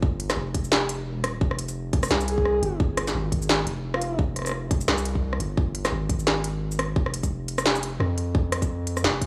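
A clanging snare, crisp hats, rim click and shaker from an up-front, tape-warm industrial drum kit carry this tense, cinematic half-time drum and bass excerpt at 173 BPM in F minor, over a tight, layered electronic kick and a deep, long sine 808-style bass with tube saturation, while a breathy, flute-like synth lead with subtle chorus, vibrato and tape echo floats in from 2.3 to 4.2 seconds, captured in a dry, gritty hardware recording with light studio reverb.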